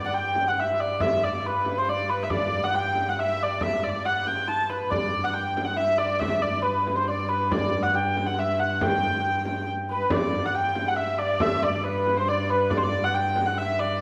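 A nasal, up-front hurdy-gurdy carries the melody over a rich, gut-string viola da gamba drone on G2 and a deep, distant frame drum in this rustic, festive medieval dance in 3/4 at 138 BPM in G major, with a mellow alto recorder adding a soft, chiffy second line in the background from 9.9 seconds, all set in the lingering reverb of a church or concert hall in a passage cut from a longer piece.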